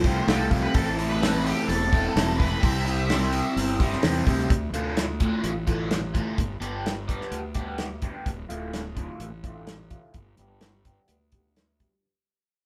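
A straight 4/4 pulse at 128 BPM drives this trippy, dark psychedelic rock excerpt in D dorian, with a damped 70s drum kit of hi-hat, tight kick and medium-tuned snare sitting dry and up front, while a round, punchy fuzz bass on fingered electric anchors the low end. A bright, double-tracked overdriven semi-hollow guitar carries the picked riff through phaser and a low-pass filter, and a dark octave-fuzz lead guitar with wah adds a short melody only until 4.0 seconds. From 4.5 seconds the chords move between Dm and G as a filter sweep moves across the semi-hollow guitar and the band, heard live in a stone room, fades out.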